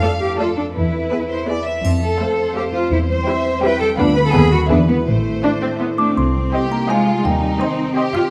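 A playful, whimsical cinematic film cue in a lilting triple metre, this short passage cut from a longer piece carries a sneaky, quirky mood. Bowed string sections carry it throughout: a clear, even violin line takes the melody over a lush, focused second violin part, while a clear viola section fills in the accompaniment and an intense, up-front cello section anchors the low end. A close, expressive double bass section joins at 0.8 s, and a mellow concert harp rings out thumb-plucked arpeggios. A dark, dry triangle sits in the background for a brief moment at 1.8 s, and a delicate, tinkling music box joins the melody at 6.0 s as the harmony turns toward C minor. The parts sit in a moderate scoring-stage reverb, and a layer of vinyl crackle gives the sound an old-record patina.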